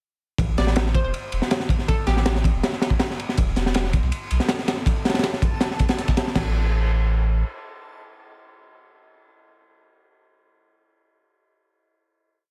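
A dark, nostalgic drum and bass piece in the jungle vein opens at 0.4 s with a crunchy, heavily chopped breakbeat kit and a soft, round dub sub bass, both sitting up front. The acoustic kit sounds saturated and gritty with a rolled-off top, pairing a punchy kick and high-tuned snare with dark crash and ride cymbals. Briefly over this, a hollow, bouncy square-wave pluck plays short, bright phrases coloured by chorus, dub echo, ring modulation and a filter sweep. A very quiet, compressed sampler-style kit of hi-hat and snare adds a looped breakbeat with edits beneath, while a reversed, dreamy texture holds a high note in the background with its own built-in reverb. The drums stop at 6.4 s, leaving the sustained sub bass to carry the final note in a dry mix.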